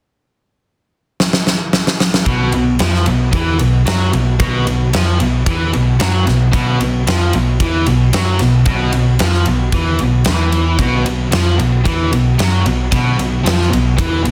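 Heavy, driving hard rock at 113 BPM, where a huge arena drum kit with a punchy kick and fat snare opens on a fill at 1.2 seconds before a bright, double-tracked high-gain guitar riff and a growly, overdriven picked bass crash in together on a B5 power chord at 2.3 seconds, all in a dense, heavily limited mix with light small-room reverb.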